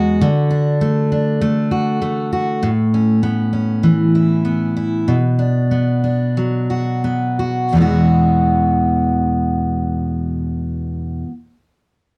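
A dark, warm production with light reverb frames this short pop excerpt, cut from a longer piece, featuring a single picked steel-string acoustic guitar placed up front. The jumbo-bodied guitar sounds full-bodied, with finger squeak audible as it plays accompaniment across the whole 11.3 seconds, ranging from E2 to F#4. The mood is sunny and carefree, set in E mixolydian in 4/4 at roughly 85-100 BPM with a light 16th-note swing. The chords move from D through Aadd9 and Bm, and the tempo slows between 2.6 and 7.7 seconds before the passage settles onto Eadd9 as a new section begins at 7.7 seconds.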